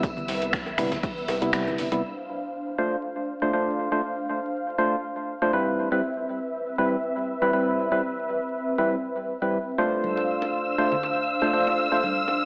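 Hypnotic and moody, this deep house excerpt moves at 120 BPM in D dorian with a light swing on the sixteenths, opening on a Cmaj7 before settling on Dm7 at 2.0 s, all coloured by a wet small-room reverb, vinyl crackle and an AM radio tint. A smooth, detuned sawtooth pad pumps against the sidechain from the very start and holds through the whole excerpt. In the first two seconds a punchy, overdriven electronic kick, metallic overdriven hats with finger snaps and shaker, a rubbery wave-folded square bass, a distant big-room acoustic kit with tambourine, bright hand-struck bongos and congas, and shimmering vintage string-machine violins all sound together over it. The kick drops out at 1.5 s while a filter sweeps across the organ stab. Entering at 0.8 s, that hollow, up-front percussive organ stab with chorus and digital delay carries the groove until 12.0 s, with the bongos and strings returning at 10.0 s.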